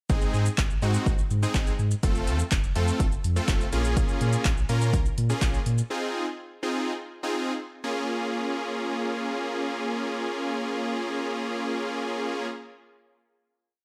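A four-on-the-floor dance-pop beat from a punchy analog drum machine, with tape-tinged kick, handclaps, hi-hat and shaker, drives this short, bittersweet yet confident piece, while a deep sine-and-triangle sub bass with octaves and slides pumps beneath it. Up front, a fat, detuned sawtooth polysynth fires bright, syncopated chord stabs in close voicing, also pumping with the sidechain, over a pre-chorus that moves through minor-seventh colours. The drums and bass drop out near 5.9 s, leaving the polysynth to carry a final chord from 7.8 s until it ends at 12.5 s, set in light digital reverb.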